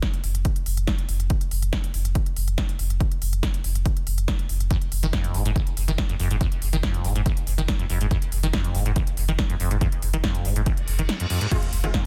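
A straight 4/4 pulse at 141 BPM drives this industrial peak-time techno cut from a longer piece in F minor, where an overdriven, punchy analog kick and a deep, thick saturated sub bass with sidechain pumping sit up front beside a layered kit of crash, smooth hi-hats and snare, a squelchy, resonant acid saw riff with 12-bit sampler grit, lush chorus and digital delay enters at 4.7 s, a reverse cymbal and sub drop arrive at 10.8 s, and an aggressive, detuned rave stab lands on an F minor chord at 11.5 s, all within a dense, heavily limited modern master.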